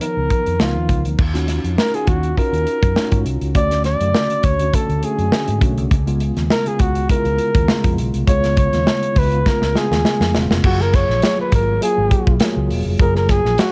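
This short cut from a home cassette recording, set in studio reverb, carries polished 1980s jazz-funk pop at 102 BPM in F# major, with a lightly swung sixteenth-note feel and an urban, upbeat mood. A warm, smooth-topped flugelhorn sits up front with the pop-styled solo melody over a mellow tine electric piano with subtle chorus and a clean, speaker-coloured tone, while a dark, round fingered electric bass enters at 0.2 s. A tight, small-room acoustic drum kit drives the groove with crash, hi-hat, kick and a medium-tuned snare, and a fill at 9.5 s leads from the D#m9, Dmaj7 and C#7 changes onto a closing F#maj9 at 10.6 s.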